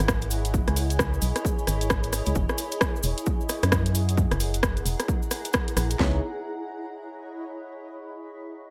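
A moody, bouncy two-step UK garage excerpt, where a hollow, organ-like FM bass and punchy, overdriven house drums with cracking snare, handclaps, hi-hat and rim click sit up front over a grainy cabasa, a mellow, ethereal pad with ensemble chorus and a filter sweep, and a blurred, evolving granular cloud pad that lingers until 7.8 seconds after a dark, boxy baby grand piano stab with dub echo lands at 6.0 seconds.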